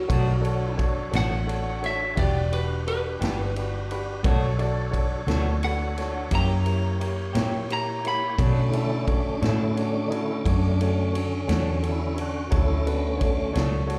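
A lightly driven, twangy lead guitar with slapback echo and digital delay sings a soulful melody over a brooding slow blues in B minor at 58 BPM in 12/8 until the tonewheel organ, swirling through a slow rotary speaker, takes the solo at 8.4 seconds, all carried by a round, foam-muted electric bass up front, a woody, slightly detuned upright piano, a clean electric guitar with harmonic tremolo in the background, and a big-band drum kit with dark cymbals and a punchy kick, heard as a live club gig through the venue's PA in this short cut from a longer performance.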